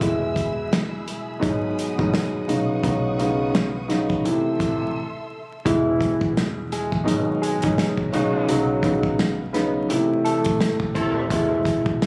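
Soulful and nostalgic, this boom-bap hip-hop excerpt rides a swung groove of dry soul drums with a tight kick and a pizzicato, woody upright bass beneath a dark, mellow upright piano, while lush bowed strings hold chords until 5.6 s, a slightly broken-up lo-fi electric guitar carries the melody from 5.7 s, and a jazz-style horn section with smooth octave-doubled stabs enters at 8.1 s, the mix captured on a phone in the room with club reverb, vinyl crackle and compression.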